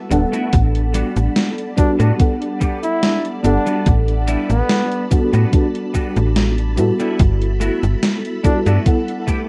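Nostalgic and woozy, this 72 BPM vaporwave excerpt with a light 16th-note swing sets a round, warbling FM electric piano and a silky background string machine behind a clean semi-hollow guitar riff, both piano and guitar carrying chorus and tape echo, over a snappy, metallic slap-like FM bass, a thumpy electronic kick from 0.5 s and a gated 80s drum machine of cabasa, hi-hat and gated-reverb snare with 12-bit sampler grit, while a flugelhorn with light vibrato and scooped notes takes the melody from 1.8 s, heard through a rough cassette home-demo mix as the harmony moves from Gmaj13 to A13sus4 and back.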